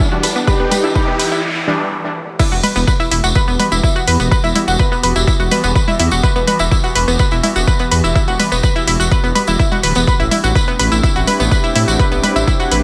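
A driving, hypnotic melodic techno excerpt opens on a build-up: a bold, brassy synth melody and bright brass stabs ride filter sweeps over a warbling wavetable pad, a round analog pluck arpeggio, a distant jingly tambourine, an airy breathy pad and an electronic riser with a noise sweep, while a punchy, overdriven analog drum machine with congas, hi-hat and crash cymbal and an up-front overdriven kick slip in. After a brief break, the drop lands at 2.4 seconds, where a menacing, detuned sawtooth bass with a saturated filter swell pumps under the kick, the pluck and the morphing pad. The soft breathy pad returns at 10.1 seconds as the chords move, all set in a light digital ambience.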